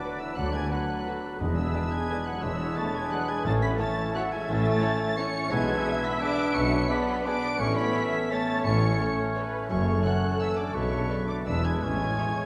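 Muted, veiled violins carry the melody of this festive, sweeping classical excerpt in a rubato triple metre, joined from the start by an airy flute, oboe, clarinet, a mellow bassoon, a background viola section, sustained French horn chords and ringing, bright harp arpeggios. At 0.4 seconds, a quiet tuba, cellos and close double basses settle in beneath, while soft-mallet timpani sound only from 1.4 to 3.9 seconds. Everything sits in a dark, warm production with a wet concert-hall reverb.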